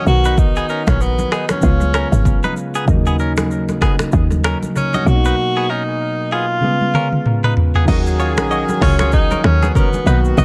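A clear, distant tenor saxophone carries a sultry, smooth afrobeats melody with light vibrato and analog delay over soft, chorused electric-piano-like synth keys, a bright, twangy clean guitar riff, a punchy woody log drum bass, a gritty electronic drum kit with deep kick, smooth hats, snaps and shaker, and background congas, with a tight horn section joining at 7.9 s after a drum fill in this echo-heavy, dry excerpt.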